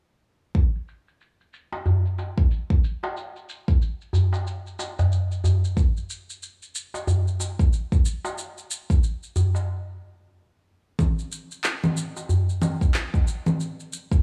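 A deep, layered electronic kick drum opens this mystical, meditative downtempo passage at 92 BPM in 4/4 with a 60% swing on the sixteenths, joined at once by a filtered, muffled kit of electronic shaker, congas and handclaps. A crisp, large metal-shelled darbuka played with soft hands enters at 1.7 seconds, and the groove drops out in a stop from 9.7 to 11.0 seconds before a second section carries on. The sound is dry and gritty, with small-room ambience, light reverb and every part placed up front.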